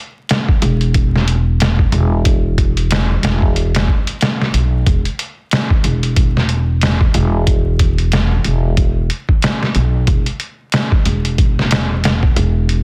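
A swung 92 BPM trip hop groove in 4/4 opens this smoky, dark excerpt, with a compressed, pitched-down sampler-style kit of thumpy kick, medium-tuned snare and hi-hat entering at 0.3 seconds, joined at 0.6 seconds by a woody, plucked upright bass sitting low between E1 and B1, both up front in a dry, dense, heavily limited master dusted with vinyl crackle.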